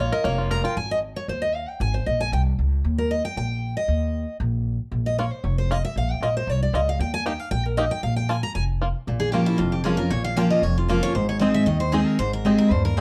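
A bright, full-bodied jumbo acoustic guitar takes the solo for the first 9.1 seconds of this rustic, haunting bluegrass excerpt in Bb dorian at 231 BPM, its picking catching finger squeaks over a woody, thumpy upright bass up front and a twangy, percussive fingerpicked banjo that returns to the melody at 5.2 seconds, before a second up-front picked guitar joins with its own melody at 9.2 seconds in a dark, lightly reverberant mix.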